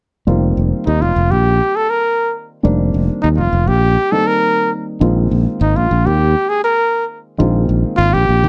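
A dry, close 1970s-style studio sound with light reverb frames this funky, soaring jazz excerpt at 101 BPM in straight 4/4, where a punchy, brilliant fingered electric bass sits up front from 0.3 seconds, a dark, mellow grand piano with short sustain comps beneath it, and a soft-attacked trumpet with vibrato and slapback echo enters at 0.9 seconds to solo over F9sus4 shifting to Bb9sus4 at 5.0 seconds.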